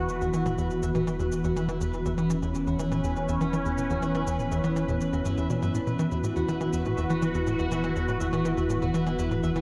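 A dreamy mix soaked in a wet cathedral reverb opens this cosmic, expansive stretch of ambient, sequencer-driven space music, cut from a longer piece and running at 122 BPM in a straight 4/4 on a single Esus2 chord, tuned to A4 = 438 Hz. Up front, a bright, detuned sweeping resonant pad holds sustained chords with a slow attack and filter swell, thickened by chorus. Beneath it, a tight, punchy sequencer bass drives a sawtooth and square-wave riff with a fast filter pluck, coloured by analog chorus and tape echo, while a round, deep sine sub bass sits on a low E. An electric guitar at the edge of break-up picks arpeggios through tape echo, fading in across the whole 9.6 seconds. A bubbling stepped-filter texture with random filter steps and a long release floats on a high B, and dry, tape-warm electronic shaker and toms join at 0.1 seconds with their own tape echo.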